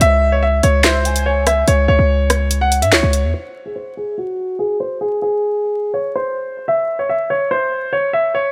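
Vinyl crackle and light digital reverb give this short cut from a longer drill track a dark, cold atmosphere. A clear concert grand piano carries the melody up front through a low-pass filter, with a deep, naturally sustained tone over a C# minor chord. It opens alongside a punchy, heavy 808-style bass and an electronic drill kit of sharp snare, rim click, handclaps and warm hi-hats, all moving in a half-time feel. From 0.8 s a velvety, detuned synth lead with chorus and digital delay slips in briefly in the background, gliding smoothly between its notes. When the drums and bass drop out around 3.3 s, the piano plays alone, its tone shifting through a filter sweep until the cut ends at 8.5 s.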